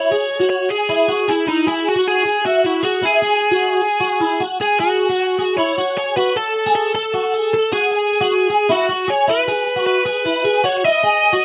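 Restless and bittersweet, this short indie pop excerpt pairs a bright, twangy twelve-string electric guitar picking chorused arpeggios with an up-front, bluesy overdriven lead guitar carrying the melody, both playing throughout over Eadd9 and F#m chords, with the harmony shifting at 6.4 seconds, in a rough home-demo mix with light reverb.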